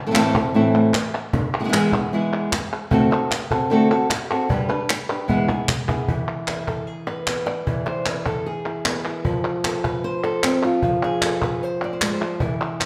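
A wet, large-studio reverb with a 1.4-second decay surrounds this intense, mournful flamenco passage, cut from a longer piece and moving at 152 BPM in a straight 4/4 in E phrygian dominant, tuned to A4 = 439 Hz. Up front, the acoustic flamenco guitar carries the melody with fresh-stringed, fingerpicked warmth, ranging from A2 to E5. Crisp palmas hand claps sit close in a small-room sound, while the woody cajon, played with soft hands and faint snares, sounds distant in a large room. The harmony moves through Am, E, D7 and G before settling back on E, with a drum fill from 4.9 to 6.1 s leading into a second section. That section later shifts to F at 9.2 s as guitar, cajon and claps carry on together to the end.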